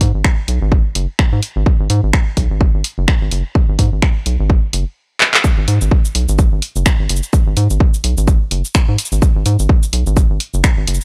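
Dry and gritty, with little reverb, this short cut from a longer minimal techno track sounds like a hardware recording, its parts sitting up front. At 127 BPM in 4/4 with a 57% swing on the 16ths, the groove in G# minor feels quirky yet clinical. A rubbery, hollow square bass runs throughout, its resonant filter pluck snapping in with a fast attack and decaying into a mellow tone, colored by transformer saturation and sidechain pumping. A punchy, layered electronic kick drives the beat until 10.7 seconds, while a tape-toned house kit of finger snaps, handclaps, hi-hat and shaker, re-recorded in a small room, fills out the top. A drum fill at 5.2 seconds leads into a drop at 5.4 seconds that carries the groove through to the end.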